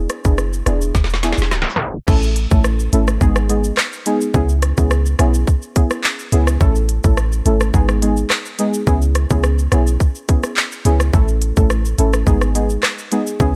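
Hypnotic and bouncy, this dancehall excerpt features a drum fill from 0.9 seconds and a tape stop at 1.5 seconds, before the main groove settles in at 2.1 seconds. The electronic, produced island pop kit sits up front, with a tight kick, woody snare, smooth hi-hats, rim clicks, handclaps, shaker and crash cymbal, all carrying a tape-tinged character. Beneath it, a clean 808-style bass delivers deep, boomy sine tones with a fast attack and a dark decay. A soft, full-bodied chord stab blends triangle, sawtooth and sine tones with detuning, a filter sweep, chorus and sidechain pumping, and it cycles through A, G#m and C#m7 after an opening E7. The mix has a digital ambience and a straight, steady pulse that keeps the loop mesmerising.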